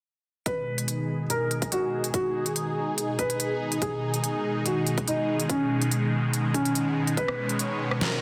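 Dense, heavily limited and bathed in a lush hall reverb, this short, menacing cut from a longer heavy wobble dubstep track moves at a half-time pulse over a single minor chord. A bright, detuned supersaw pad holds sustained chords up front with phaser, sidechain pumping and a filter sweep, while a mellow, felt-muted upright piano carries a soft, intimate melody through delay. A dubstep kit of crisp hats, rim click and a deep, clipped snare sits beside a punchy, overdriven electronic kick that drops out at 7.3 seconds, before the kit stops at 8.1 seconds and the pad and piano end at 8.2 seconds.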